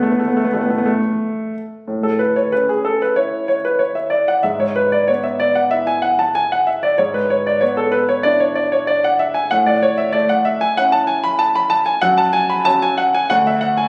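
Graceful and cheerful, this short cut from a longer classical-period piano sonatina features a solo concert grand with deep bass and a smooth, vintage tone placed up front, moving through A, E/G# and back to A in a straight 4/4 over 13.9 seconds, heard within a moderate recital-hall reverb and captured on a phone in the room with added club reverb and compression.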